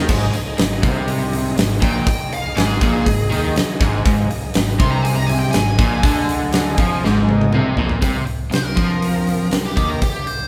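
Blues rock power trio and southern rock, brooding and heavy, built on a crunchy, double-tracked overdriven guitar riff and a growling fingered electric bass with bright overdrive, driven by a huge arena drum kit with a fat snare, punchy kick and bright cymbals up front. A gritty, thick tonewheel organ sustains chords in the background through a slow rotary speaker and chorus vibrato, while a dark, smooth overdriven lead guitar with wah enters at 1.8 s for a solo. A drum fill at 7.0 s leads into a new section at 8.0 s, where the organ stops, and the band sounds as if playing live together in a large studio room.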